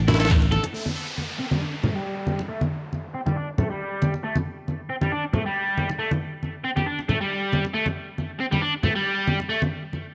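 A round, dark fingered electric bass opens this funky, swaggering breakbeat piece at 137 BPM in A minor, quickly joined by a gritty, pitched-up sampler-style drum kit with a thumpy kick and high-tuned snare, thick-skinned low-tuned congas, and faint handclaps and filtered hi-hat from a background garage kit, with a band accent at 0.3 seconds. The bright, double-tracked distorted guitar riff, roughened by overdrive, 12-bit sampler grit, cassette tape and tape echo, carries on over an A7(no3) chord under a filter sweep from 0.7 seconds, while the congas keep going and a soft electronic downlifter sounds beneath. The whole excerpt has the dulled, lo-fi character of a home cassette recording with light reverb and a gentle 16th-note swing.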